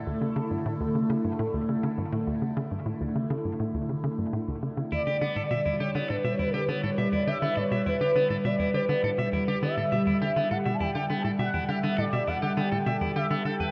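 A steady, straight 4/4 pulse at 102 BPM drives this cosmic, expansive excerpt of sequencer-driven ambient space music in E dorian, where a bouncy, hollow square-wave pluck with a detuned noise layer repeats a low riff under a swirling, phased analog pad that sustains mellow sawtooth chords up front, moving from Dsus2 to Em7 at 4.9 seconds. At that point an expressive portamento lead enters with a smooth, dark sawtooth melody touched by vibrato and ensemble chorus, joined by a twangy electric guitar at the edge of break-up picking bright arpeggios through analog delay. A long plate reverb and echo-heavy mix wash the whole piece into a vast, floating space.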